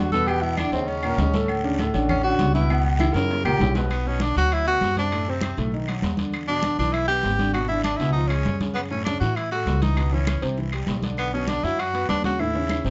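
A bright, vibrato-laden tenor saxophone takes the melody at 3.9 s, after a breathy, whispered tenor saxophone solo opens this sophisticated, driving Afro-Cuban jazz excerpt in B minor at 198 BPM, over a growly pizzicato upright bass, a deep-toned concert grand piano, thick-skinned congas, ringing agogo bells and timbales, woody claves and a raspy guiro, with drum fills at 3.0 s and 12.4 s in a moderate studio reverb.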